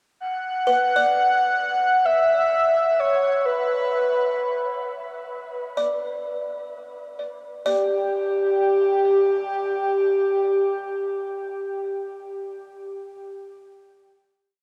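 Serene and luminous, this brief free-time ambient piece, tuned to A4 = 441 Hz, floats a breathy, flute-like synth lead with tremolo, analog chorus and tape echo through motif-based call phrases from 0.2 seconds over a Bm chord, while a buzzing, woody kalimba scatters short, bright arpeggio notes with its own tape echo from 0.7 seconds, all bathed in a huge, wet reverb with cassette-tape character before settling on a final chord at 7.7 seconds.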